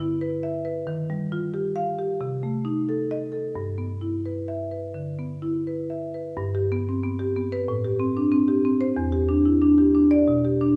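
A woody, up-front solo marimba played with medium hard mallets rings through a moderate recital-hall reverb in this short, flowing excerpt of a contemporary classical piece in G major, moving with rubato at around 83-94 BPM in 4/4 over chords such as Ebadd9 and Cm6 before settling toward G, Am7 and Em7 from 6.4 seconds.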